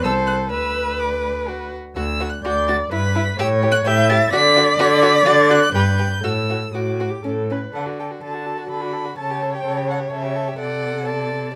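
A rich, up-front cello anchors this spirited, cheerful excerpt from a quick classical-period movement for string quartet in triple time, its expressive bowing carrying vibrato, portamento and a soft attack in the low register. Above it, a single warm violin sings the melody high in its range, sounding distant yet expressive, with vibrato and gliding portamento. A dark second violin plays its line close and intimate, bowed sul tasto with an airy tone and light vibrato. A dark viola fills in the accompaniment with vibrato and portamento, matching the cello in level. The rubato feel gives the harmony room to breathe as it moves through minor colours toward A7 and D before a brief break in the chords, then a new section at 7.8 s settles on D and closes on D7/C, all under a light reverb.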